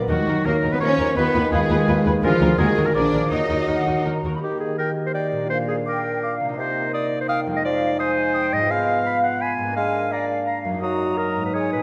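Magical and sneaky, this playful, whimsical film cue in 3/4 is cut from a longer piece and rests on a mellow French horn section's sustained chords, ringing fingerpicked concert harp arpeggios and a soft-attacked bassoon tucked in the background. Two dark violin section lines, a lush viola section, a focused cello section, a double bass section with portamento and a very quiet, punchy tuba fill the opening, then drop out by 4.3 s as the harmony turns to major. An airy, distant flute ensemble, an up-front clear clarinet and a classical oboe with light vibrato carry second lines through to the end, all set in a wet concert hall reverb.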